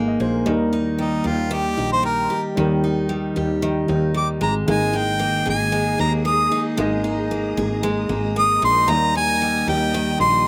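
A dry, close sound with little reverb and an open-air feel frames this sunny, easy-going slice of acoustic pop, cut from a longer piece and moving at 114 BPM in a straight 4/4. A bright, full-bodied steel-string acoustic guitar sits up front, picked with audible finger squeak, while a woody upright piano fills in softly behind it and a round, growly fretless electric bass anchors the low end. At 1.0 seconds a clear harmonica enters up front with a pop-style solo melody that ranges high. From 4.7 seconds a bowed studio string section joins in the background, adding focused sustained chords with gentle vibrato. The harmony rests on Eb, shifts to Absus2, and returns to Eb, keeping the mood relaxed and bright.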